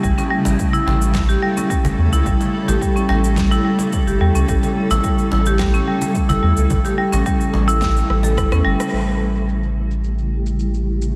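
A straight 4/4 pulse at 108 BPM drives this hypnotic, warm organic downtempo excerpt, with a punchy, overdriven electronic kick and a fat, overdriven layered snare with cabasa and rim click, both set in a small room, while a woody cajon with faint snares sits distant and in the background. A round, deep analog bass with a dark, sine-like tone stays up front and pumps with the sidechain, as does a cloudy, detuned granular pad holding sustained chords that open on A7 and blur into their own built-in reverb. Over this, a mid-forward marimba played with medium hard mallets spins arpeggios through a diffuse ambient delay. A drum fill starts at 8.1 seconds, during which the cajon and then the kick drop away, and the marimba falls silent as the band hits an accent at 8.8 seconds. From 8.9 seconds filter sweeps shape the remaining drums and the pad, all within a dreamy mix soaked in lush hall reverb.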